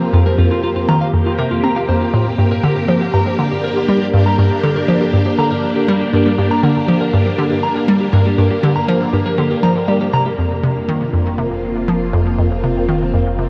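Ambient, sequencer-driven space music in G minor at 120 BPM, mysterious and hypnotic, cut from a longer piece, where a hollow, nasal square-wave pluck riff with chorus and tape echo sits up front beside swirling sustained chords from a bright phased string machine, a clean picked electric guitar traces echoing arpeggios until 10.3 s, and a round, deep analog bass enters at 10.4 s as the harmony returns to Fsus4, all steeped in huge reverb and the warble of worn cassette tape.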